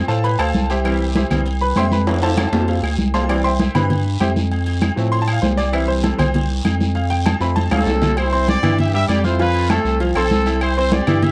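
A dry, close 1970s-style studio sound frames this joyful, festive salsa fragment, where a brilliant, worn concert grand piano with audible action noise solos up front until 8.2 seconds over a deep, saturated sub bass, soft-handed congas, raspy guiro, distant ringing agogo bells and timbales, and woody claves in the background, before a punchy pop-style trumpet section with light vibrato enters at 7.7 seconds.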